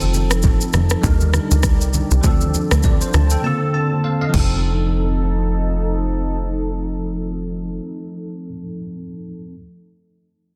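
A swung 100 BPM afrobeats groove in 4/4 carries this sunny, romantic excerpt in F mixolydian. An electronic afro-pop drum kit with a deep kick, rim click, shaker, crash and softly clipped snare sits up front until 4.5 seconds, alongside very quiet, thin-skinned congas and a punchy, funky sawtooth bass with a fast filter pluck. Over these, a bell-like, clean tine electric piano with ensemble chorus plays F7, Ebmaj7, Dm7 and Bbmaj9, adding a fill from 2.8 seconds before a silent gap. Beneath it sits a deep, moody, detuned pad carrying chorus and built-in reverb, and the whole mix rests in light digital ambience within a dense, heavily limited modern master.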